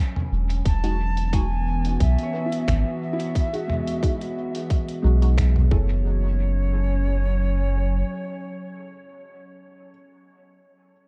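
A lightly swung 4/4 groove of a tight, overdriven electronic kick and a muffled, compressed sampler-style kit of finger snaps, hi-hat and toms drives this meditative, spacious ambient dub fragment, where a round, deep sub bass sits up front beneath a warbling, detuned tape-like pad; a felt-muted upright piano with audible action noise, 12-bit grit and dub echo plays arpeggios in the background, a nasal filtered chord stab with phaser and cassette colour also sits in the background, and a distant, airy concert flute with vibrato carries the melody from 0.7 s over a dark digital ambience as the harmony moves from Emaj9 to F#m9 at 5.7 s.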